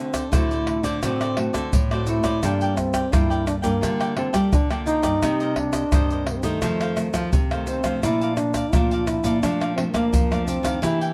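Dark, warm production with light reverb frames this short, lively yet bittersweet slice of samba and choro, moving at 86 BPM in a straight 4/4. A breathy trombone carries the melody up front in a mellow jazz style, its soft attack, scooped notes and light vibrato giving the lead a smooth top. Beneath it, a fingerpicked classical nylon-string guitar supplies accompaniment, while a second nylon-string guitar plays the bass line in the background with a full-bodied, deep tone and audible finger squeak. A picked cavaquinho adds crisp, bright accompaniment in its upper register, and a close, dry percussion section of egg shaker, tight surdo, pandeiro and tamborim sits prominently in the mix. The harmony moves from D7 through Gm9, Cm7 and F7, arriving on Bbmaj7 at 8.0 seconds before the cut ends around 11.1 seconds.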